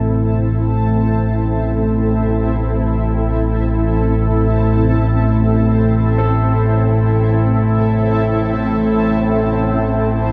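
A huge, wet reverb with an 8.4-second tail wraps this dark-sounding dark ambient drone, a short cut from a longer piece that hangs in free time with a desolate, ominous air. Up front, an analog drone with a sawtooth and pulse-width-modulated edge holds the low register, its chorus giving it a warbling, vintage character as it slowly evolves. Beside it, a granular cloud pad sustains blurred, cloudy chords in unison, fading in slowly and trailing off with a long release inside its own reverb. Far behind them, a very quiet concert grand piano with a warm, deep bass traces soft arpeggios. A quartz singing bowl struck with a wooden striker adds a barely audible, airy ringing with slow beating. All four parts sound together across the full 10.3 seconds over an A5 chord.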